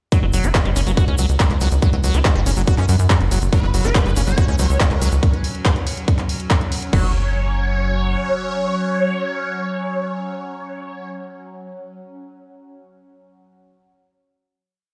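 A short psychedelic trance piece at 141 BPM opens straight into an intense, alien drop, with an overdriven electronic kick pounding four-on-the-floor up front alongside a programmed kit of bright hats, claps and crash. A tight, punchy sequencer bass rolls in sixteenths beneath a squelchy, resonant acid line that slides through its sixteen steps with chorus, delay and sidechain pumping, while a grainy egg shaker ticks in the background until 5.2 seconds. A very quiet, wobbling formant-sweep bass adds short answering phrases early on. At 3.5 seconds a swarming, aggressive rave lead arrives with a pitch-rise attack, detuned unison and a phaser-washed repeating riff, soon joined by a slow-attack drone of moving overtones. The drop gives way at 6.9 seconds to a final chord in which the lead and drone sustain to the end, all set in a large, reverberant space.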